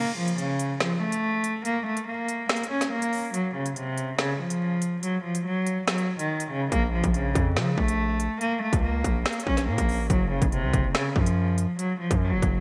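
Drill hip hop in Bb harmonic minor, this dark, ominous fragment of a longer piece moves at 142 BPM in 4/4 with a half-time feel. A single bowed cello carries the melody from the very start, its reedy, gut-string tone and airy bow sitting up front with a digital delay trailing behind it. At 0.3 seconds the electronic drill kit comes in with finger snaps, crisp hats, a woody snare and a hard-clipped kick, overdriven and wrapped in gated reverb, re-recorded in a small room. The opening plays as a break with the harmony unset, until at 6.7 seconds a distorted 808-style bass lands on Bb minor, aggressive and saturated with a fast attack and a decaying tail, before the harmony moves to Gb5 at 10.1 seconds. Light reverb and digital ambience give the whole a bright 1980s-style sheen, laced with vinyl crackle.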